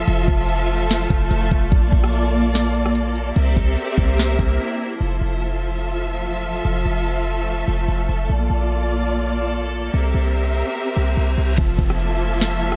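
Lush, bowed strings with vibrato and portamento sustain sidechain-pumped Fmaj7, Bbmaj7 and C7 chords over a deep, boomy 808 bass in this floating, dreamy half-time cloud-rap excerpt, while a bright, granular reversed texture swells in the background and a trap kit of knocking kick, sharp snare, rim click and crisp hats drops out at 4.5 seconds, then returns at 11.6 seconds after an electronic reverse cymbal and downlifter arrive at 11.0 seconds.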